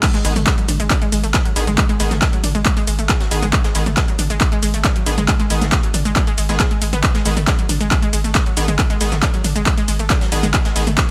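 Dark, industrial peak-time techno at 137 BPM in G# minor, this roughly 11-second cut from a longer piece sits in a driving drop, with a punchy, tape-warm electronic kick and an up-front analog drum machine of crash, handclaps, hi-hat, ride, shaker and toms over a faint, gritty vintage kit with a high-tuned snare, while a thick, saturated sub bass holds G#1 under an overdriven, low-pass filtered, sidechain-pumped tone, a round, detuned analog pluck carries the riff through chorus and delay, and from 0.2 seconds an edgy sync-sweep polysynth adds nasal stabs, all within a bright 1980s-style digital production with light reverb.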